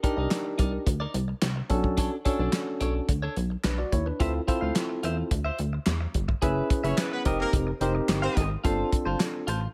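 Slick and danceable, this early-eighties boogie funk excerpt moves at 108 BPM in a straight 4/4, with a clean, up-front tine electric piano comping over Cm9, Bm9 and Dm9 chords, a bright, twangy picked guitar riff with subtle chorus, a dry, damped 70s drum kit of tight kick, fat snare, hi-hat and handclaps, and a punchy, plucky analog bass with a fast filter-pluck attack entering at 0.2 seconds, while a smooth-topped horn section with light vibrato adds a loose second line from 6.8 to 8.4 seconds over the sus4 chords, all set in a small room with light reverb.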